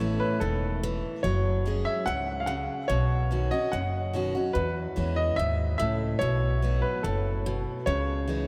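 All three parts sound together from the start of this short honky-tonk and classic country excerpt: a bright, brilliant upright piano carries the melody over a picked, full-bodied steel-string acoustic guitar with audible finger squeak and a woody, pizzicato upright bass. At 145 BPM in a straight 4/4, the mood is sunny and heartfelt, with the chords moving from A through F#sus2, Badd9 and E6 to B before landing on C#madd9 near 7.9 seconds. Each instrument sits up front, yet a wet cathedral reverb places them in a vast, echoing space.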